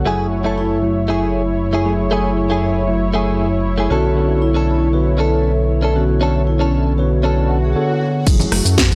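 Nu-disco in F# minor at 117 BPM, this short cut from a longer piece feels cosmic and groovy, moving in a straight 4/4 over two chords, F#m9 and Bm9. A glossy, pulse-width-modulated synth bass with a filter pluck sits up front under a clean tine electric piano played through a combo amp, while a lush, detuned unison pad holds sustained chords with a warbling chorus; the piano and pad both pump against a sidechain. A bright, direct-recorded clean electric guitar picks a compressed riff through analog chorus and a low-pass filter, and a vibraphone with soft mallets carries the ringing melody with slow motor vibrato. An electronic swell comes in at 7.4 seconds, and at 8.3 seconds the drums arrive: a punchy, tape-warm electronic kick and an up-front house kit with a cracking snare, metallic hats, crash, rim click and shaker, joined briefly by ringing congas in the background. The whole mix has a dry, gritty hardware character with transformer saturation and only light reverb.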